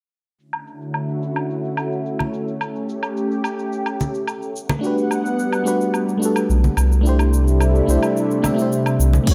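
Sunset chillout at 108 BPM in D major, blissful and dreamy, drifting through Dmaj7, A7, Gmaj9 and C69 chords in a mix soaked in plate reverb. A lush, detuned sawtooth unison pad with chorus and phaser carries sustained chords under a filter sweep, while filtered electronic cabasa, woodblock and crash cymbal play along and bright, close, dry congas join at 2.2 s. A mellow, warbling FM electric piano with chorus and analog delay enters at 4.8 s, a round, deep analog bass settles in up front at 6.5 s, and a single overdriven electronic kick lands at 9.3 s in this excerpt cut from a longer piece.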